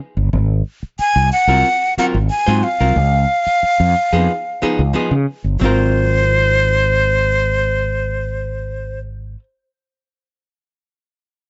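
A straight 4/4 funk groove at 91 BPM in Ab mixolydian rests on a round, up-front fretless electric bass, with the harmony moving between Ab13 and Db9. A breathy jazz flute carries the melody from 1.0 s, its soft attack, vibrato and slightly unsteady tone lifted by plate reverb. A dark, clean, picked hollow-body archtop guitar adds accompaniment from 1.5 s, also in plate reverb. The mood stays funky and energetic through this short cut from a longer piece, with a new section arriving at 5.6 s and a mellow top end in a lightly reverberant room.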